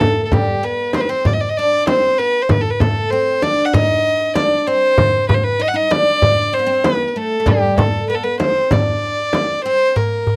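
A dry, close studio sound in a 1970s style, touched with light reverb, frames this short cut from a longer Turkish makam ensemble piece in D makam hicaz, tuned to A4 = 441 Hz. At a steady 96 BPM in a straight 4/4, the mood is hypnotic and melancholic. A single bowed violin carries the melody up front between G4 and F#5, its gut-string tone reedy and rich with light vibrato in a period manner. Beneath it, a fretless oud with double strings plays a second line from G3 to Eb4, plectrum-plucked, woody and bright. A large metal-shell darbuka sounds crisp and deep, close and dry, while a frame drum struck with hard hands adds a warm, live-room thump until it drops out at 9.5 s, leaving violin, oud and darbuka to run on to 10.4 s.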